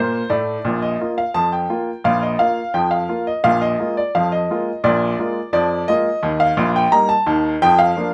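Ragtime in a cheerful, lively 2/4 at 86 BPM in Bb major, this short excerpt from a longer piece features a solo upright piano, brilliant and woody with long sustain and placed up front in a moderate studio ambience, opening with a brief fill before settling at 0.6 seconds into a straight-feel strain that moves from Bb through Bb7 to Eb and closes on Bb/F.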